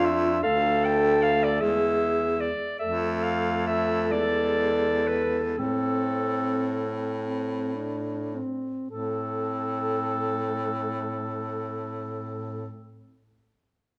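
A bright, vintage-toned clarinet carries the melody up front in this elegiac, solemn classical excerpt for single-reed quartet in A minor, moving in a rubato 6/8 at 34-51 BPM and slowing from 1.6 to 8.9 seconds before a new section arrives at 8.9 seconds. Beneath it, a warm alto saxophone with vibrato and a smooth top sings a second line, a mellow, distant clarinet supplies accompaniment, and a bright baritone saxophone, also vibrato-laden and up front, holds the bass through harmony moving from D5 and E to F, E7 and A minor. A recital-hall reverb gives the ensemble a roomy, resonant sound.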